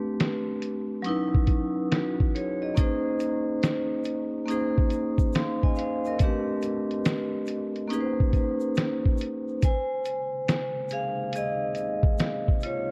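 Lo-fi hip hop with a hazy, melancholic swing, built on a bright, ringing vibraphone struck with hard mallets that carries a solo from 9.6 seconds over muffled, pitched-down sampler drums with a thumpy kick and fat snare, a grainy egg shaker in the background from 2.8 seconds, and a deep, dark ambient pad with chorus entering at 10.1 seconds, all colored by worn, warbling cassette tape.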